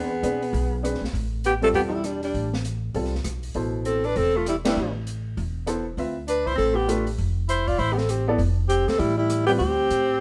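Spiritual and searching, this swung modal jazz excerpt from a longer piece sets a breathy, close-miked alto saxophone melody with scooped notes and vibrato up front over a clear tenor saxophone second line, a boxy upright piano with short sustain, a woody, thumpy pizzicato upright bass and an acoustic drum kit with a high-tuned snare and boomy kick, with the band hitting a shared accent at 4.6 seconds as the chords move from E7b13 through Am9 to Dm11 in a moderate studio reverb.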